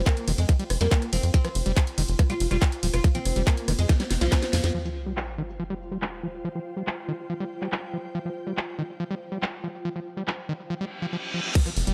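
Psychedelic trance at 141 BPM in a straight 4/4, driving and alien in mood, tuned to A4 = 436 Hz and cut from a longer piece. It opens on a drop, with a tight electronic kick up front and a tight sequencer bass with a sawtooth filter pluck underpinning a squelchy, gritty acid bass riff that runs throughout, distorted and pumping with sidechain and delay. A woody, plectrum-plucked fretless oud carries the melody from 0.1 to 4.7 seconds, treated with phaser, delay and sidechain pumping, while an ethereal, airy pad sits in the background with chorus, reverb and phaser. The drum kit adds a cracking snare, bright hats, handclaps, rim clicks and cymbals, filtered and re-recorded in a small room, and a drum fill and band accent lead into an impact at 4.7 seconds, where the oud, kick and sequencer bass drop out and a sub drop takes over. The acid bass, kit and pad carry the second section, with a reverse cymbal and downlifter building from 10.9 seconds before the kick and sequencer bass return briefly at the close, all under light reverb.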